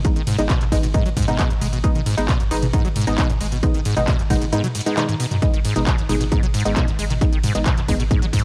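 An overdriven, up-front kick drum pounds from the first second of this hypnotic, industrial peak-time techno cut in G# minor at 134 BPM, joined at once by a squelchy, resonant sawtooth acid bass riff with analog chorus and delay, muted, mellow dub chord stabs carrying lush chorus and delay, a deep, round sine sub bass in the background, and a layered, driven kit of smooth hats, handclaps, ride and toms, with a brief drum fill at 5.0 seconds, sidechain pumping on the acid bass, stabs and sub, and a dry, gritty sound overall.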